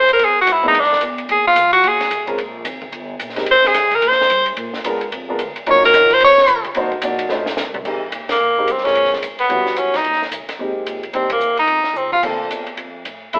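Cool and late-night, this brisk small-group swing-and-bop jazz excerpt at 219 BPM puts an edgy, forceful tenor saxophone up front with vibrato and scooped notes, soloing through the first 7.8 seconds over woody pizzicato upright bass, a dry compact cocktail drum kit with dark cymbals, a high-tuned snare and punchy kick, and polished grand piano entering at 0.6 seconds, all heard live in a stone room with a telephone-like sound, with a drum fill at 7.3 seconds leading into a second section marked by band accents at 8.3 and 11.3 seconds.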